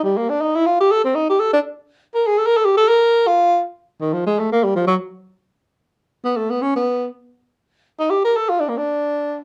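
Playful and swinging, this short jazz fragment cut from a longer piece features a lone tenor saxophone, up front and intimate, its breathy, whispered tone carrying soft attacks, scooped notes and vibrato through a moderate club reverb across its 9.4 seconds.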